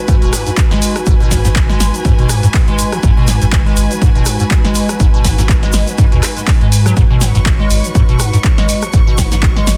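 Acid house with a driving, trippy mood, this short cut from a longer track sits on a single minor seventh chord and a light swing in its sixteenths. A squelchy, resonant acid bass carries the riff with a square-wave bite and a filter sweep, colored by phaser, lush chorus, cassette tape character, digital delay and sidechain pumping, while a round sine sub bass arrives at 0.2 seconds to sit deep in the background. A punchy, tape-warm electronic kick drum sits up front, joined by an analog drum machine playing handclaps, hi-hat, rim click and snare, both re-recorded in a small room. A grainy, mellow tube shaker adds close, dry acoustic texture. Behind them, a warbling, nostalgic pad of detuned, wave-folded tones holds dark, lo-fi chords with chorus, built-in reverb and pumping, and a rich studio string section adds a smooth, bowed ensemble texture with vibrato. The mix has a digital ambience and a dense, heavily limited modern master.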